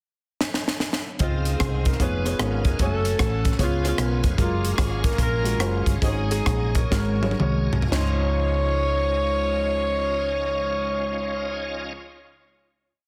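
A crisp, up-front fusion drum kit with a high-tuned snare and punchy kick opens this short, uplifting uptempo gospel piece in Db major with a fill at 0.4 seconds, and at 1.2 seconds a close-miked saxophone section takes up a jazz-style motif melody over a dark, round hollow-body electric bass walking and running with slides, a baby grand piano pushing open drop2 chords with grace notes, a shouting, lightly overdriven tonewheel organ pad with slow rotary speaker, key click and chorus vibrato, and a very quiet French horn section pad, the band swinging in 4/4 between 113 and 151 BPM through a breakdown that slows before settling on a held Dbmaj9 final chord at 7.9 seconds under light reverb and a dense, heavily limited master.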